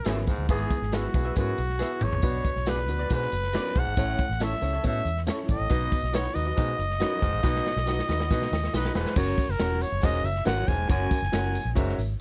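A straight 4/4 groove at 138 BPM drives this danceable, uplifting slice of uptempo 1960s-style soul, cut from a longer piece. A swinging big-band drum kit with a punchy kick and medium-tuned snare sounds airy and polished in a hall, with fills around 1.8 s and again leading into 9.2 s, where the harmony moves from E/G#, Bm, A and B onto F# and the music turns to F# mixolydian. Up front, a growling trumpet carries the melody with a brilliant, gritty tone, vibrato and scooped notes, while a foam-muted, round fingered electric bass sits beneath it. A clear baby grand piano accompanies with an intimate, natural sound and audible action noise, and a raspy baritone saxophone plays a distant, roomy low riff in the background. An electric guitar through a small old amp adds slightly broken-up, lo-fi stabs with analog chorus until 8.9 s, and a jingly tambourine sits softly behind, all under a dark production with light reverb.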